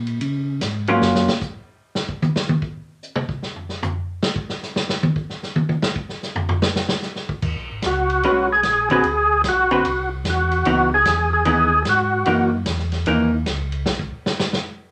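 Bluesy and soulful, this swung 150 BPM soul jazz organ trio fragment opens with a round, mellow tonewheel organ bass with slow rotary and a brief touch of dark, picked hollow-body jazz guitar, before a punchy, dark-cymballed vintage drum kit takes a solo from 1.0 s. The organ bass returns at 7.4 s in G# minor, the guitar follows at 8.2 s, and an up-front, lightly overdriven percussive tonewheel organ with key click plays a brief melody in a small, wet room.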